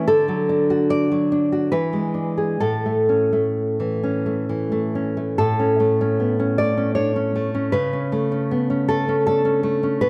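A fingerpicked nylon-string guitar sits up front in this short romantic piece for solo classical guitar, its fresh strings carrying a warm acoustic tone. Cut from a longer work, the music moves in a flexible rubato 3/4, with the pulse drifting between 62 and 82 BPM. In A major, the harmony passes from D through E7 to A in the opening seconds, later settling on A/C# around 7.7 seconds, as the playing spans from A2 up to D5. The mood is sunny and warm, and a moderate concert hall reverb with a 2.0-second decay surrounds the guitar in a dark, warm production. The first phrase gives way to a second idea at 5.4 seconds, carrying on to the end of the excerpt at 10.1 seconds.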